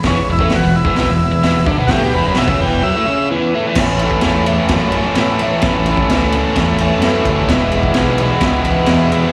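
A rowdy, raw garage rock cut at 129 BPM opens on a gritty, boomy drum kit with a high-tuned snare, a growling bass pushed through overdrive, and very quiet, clean combo organ chords with light vibrato, all heard as a live gig through a club PA. A biting, double-tracked guitar riff with slapback echo sits up front throughout, while a buzzy, overdriven combo organ carries the melody with its own slapback echo until 3.3 s. The chords move from E to A at 3.8 s and return to E at 7.5 s.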